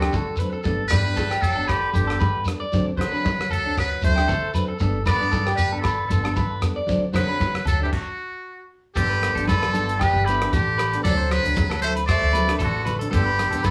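Joyful and danceable, this highlife guitar band excerpt features a buzzy, brilliant muted trumpet carrying the melody up front with light vibrato and scooped notes, a raspy, gritty tenor saxophone on a second line, a dark, full-bodied fingerpicked acoustic guitar and a twangy, slightly broken-up electric guitar playing arpeggios through a phaser, a woody, thumpy pizzicato upright bass, a dry damped drum kit with a tight kick, and a grainy shekere and hard-hand congas in the background, all swinging in a small room with moderate reverb and a stop from 7.9 to 9.0 seconds.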